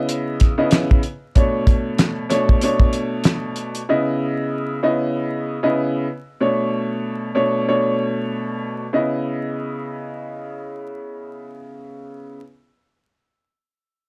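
A clear, woody upright piano accompanies this tough, dark boom-bap hip-hop excerpt, its smooth, long-sustaining vintage tone carrying minor ninth chords that move between C#m9 and Bm9 over a swung feel. The piano sits up front, filtered at both ends and colored by cassette tape, and plays through the whole clip to 12.4 seconds. A cloth-damped, thuddy acoustic drum kit punches in at the start with a fat snare, tight kick, hi-hat and handclaps, its rolled-off top giving it a muffled edge before it drops out at 3.9 seconds. From there the piano carries on alone, shifting into a new section at 8.9 seconds as the harmony returns to C#m9. A short, moderate small-room reverb and a haze of vinyl crackle give the dark production its dusty, close character.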